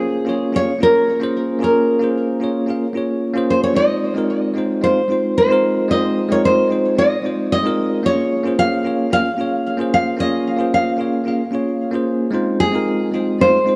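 A lush hall reverb surrounds this relaxed chillout excerpt at 112 BPM in 4/4, its warm mood carried by a full-bodied, fingerpicked nylon-string guitar playing the melody up front through a digital delay. Beside it, a bell-like, bright tine electric piano gives clean, direct accompaniment with tape echo. Both play throughout the 13.8 seconds over an alternation of Bbm7 and Fm7.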